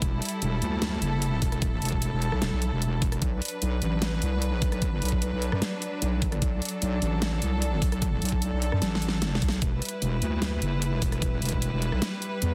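A half-time groove drives this aggressive, heavy wobble dubstep, where a saturated square-and-sine wobble bass with chorus and overdrive sits up front beside a huge snare, bright hats and rim clicks from a tape-warm electronic kit, an overdriven knocking kick that drops out at 11.6 seconds, and a rich, biting symphonic string section holding bowed chords with light vibrato and sidechain pumping over a move from Em to Bm and back, broken by a drum fill at 8.8 seconds in a dense, heavily limited mix with light reverb.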